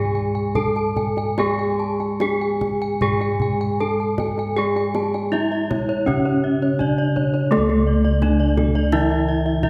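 Stately and shimmering, this Javanese gamelan passage, cut from a longer piece, moves at 72-85 BPM in a straight 4/4. Up front, a bright, ringing bronze metallophone carries the melody with the shimmering beats of its paired tuning, while a second horn-mallet metallophone sits mid-forward with a lower accompaniment. A third plays high arpeggios, and round, beating bossed gongs hold the bass. A tight, close kendang enters in the background at 0.6 s, and the ensemble is heard from further back in a wet concert hall.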